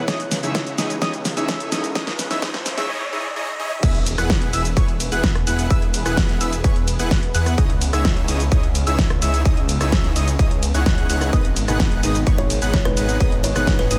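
Anthemic and triumphant, this excerpt of festival progressive house drives along at 128 BPM in a straight 4/4, set in E major. It opens on a build-up, with a drum fill from the big-room kit, a riser and noise sweep in the background, and a dark, mellow concert grand piano whose action noise can be heard as it plays accompaniment until 2.9 seconds. The drop lands at 3.8 seconds with an impact, as a huge, euphoric supersaw lead carries the riff through a low-pass filter and delay, pumping against the up-front, punchy electronic kick. Beneath it, a thick, saturated detuned saw bass anchors the low end, while a catchy plucky lead spins high arpeggios in the background and a lush, airy pad holds very quiet sustained chords over a C#madd9, E and G#m progression. The kit adds a huge snare, hi-hat, ride, crash, rim click and shaker, the piano returns at 11.3 seconds, and a woody, ringing kalimba melody with delay, heard only briefly at the very start, comes back at 12.4 seconds. 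The mix is dry, with little reverb.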